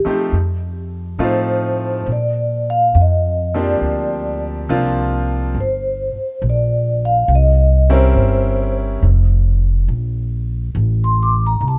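This rough home demo has a dulled top end and a small room reverb that gives the parts a close, intimate feel. It is a romantic jazz ballad in F major, cut from a longer piece, moving at a slow 69 BPM in 4/4 with a gentle swing on the eighth notes. An up-front upright bass plays woody pizzicato lines on steel strings, and a bright, brilliant grand piano supplies accompaniment in its middle register until it drops out at 9.0 seconds. The vibraphone, played with soft mallets, carries the melody as a solo from 1.2 seconds, its metallic, ringing tone shimmering with a fast motor vibrato yet staying mellow and slightly boxy. The harmony moves from F7 through Bb69, Gm and C7b9 before settling on F.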